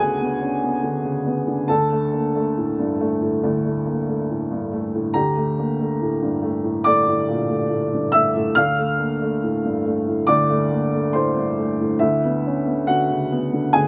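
Played rubato in 4/4 around 70 BPM, this short excerpt of neoclassical minimalist piano moves at an unhurried, breathing pace in D minor. A solo upright piano carries the whole passage from 0.0 to 13.9 seconds, its woody, warm tone placed up front and ringing with long sustain across a range from D2 to F6. A slapback echo on the piano adds a doubled edge to each note, while light reverb frames the sound. The harmony drifts over a D in the bass, passing from Bm69/D through Dsus4, Gmadd9/D and Fadd9/D before arriving on E7/D at 12.0 seconds. Recorded outdoors and free of any room sound, the piece feels wistful and reflective.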